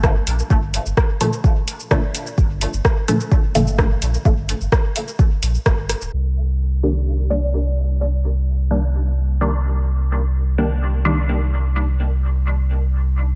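A round, sine-based sub bass sits up front through this meditative, nocturnal dub techno excerpt in C minor at 128 BPM, its sustained, mellow notes pumping against the sidechain. An overdriven electronic kick drum and a layered deep house kit of cabasa, hi-hat and rim click carry the straight 4/4 pulse until about 6.1 s. The kit is dulled by low-pass filtering and trails dub echo, and both drum parts sound re-recorded in a small room. A muted, detuned chord stab built from sawtooth, pulse and sine waves appears at a lower level, its wave-folded, resonant filter plucks colored by phaser, sidechain pumping and dub echo. The harmony moves from Gm7 to Cm7 as the second half begins, where a filter sweep runs to the end and the bass continues as the stabs return, all under a light reverb and a low-pass filter that leave a soft, dim finish.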